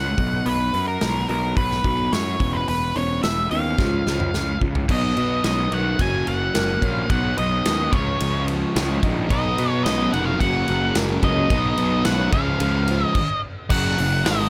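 A dark, fuzzy octave lead guitar carries the melody from the opening moment, joined by a growly, punchy fuzz bass up front and a softly broken-up, lo-fi guitar through a small old amp picking phaser-tinged arpeggios in the background. A big acoustic rock kit with bright cymbals, a medium-tuned snare and a tight kick sits close and natural in a large room, and a drum fill leads into the second section at 4.9 seconds, where a compressed, shadowy overdriven guitar riff enters behind the others. At 9.3 seconds a thick, bright fuzz guitar adds a distorted riff of its own, thickening the wall of sound in this cathartic, bittersweet stretch of quiet-loud alternative rock. The lead's digital delay adds echoes while the room stays nearly dry, and a brief stop cuts through the band before the next chord lands.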